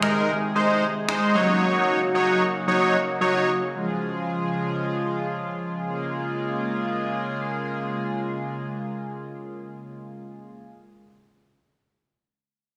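Confident and driving, this short dance-pop excerpt in Bb minor moves at 113 BPM in a straight 4/4, opening with a fat, nasal, detuned polysynth up front with chorus, plate reverb and slapback echo until 3.5 s, alongside layered electronic finger snaps and a barely audible downlifter. A shimmering, retro pulse-width pad with soft attack and plate reverb sustains chords through 10.6 s, as the harmony moves from Ab through Ebm7 and Db to Bbm7. The whole sounds like a live gig heard through a venue's PA, carrying moderate club reverb.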